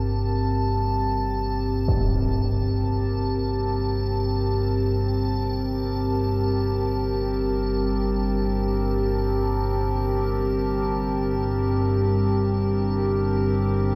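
A cavernous, reverb-soaked hall surrounds this unsettling dark ambient drone in G minor, drifting in free time on a single Gmadd9 chord through a 14-second cut from a longer piece. An up-front analog drone, warbling and vintage with pulse-width movement, holds the low register while a deep, nasal, detuned dark analog pad sustains chords above it with subtle chorus. A faint, crystalline glass pad hovers high on A5, a huge, bright, low-pass-filtered impact strikes at 1.9 seconds, and the ambient pad fades out across the whole passage.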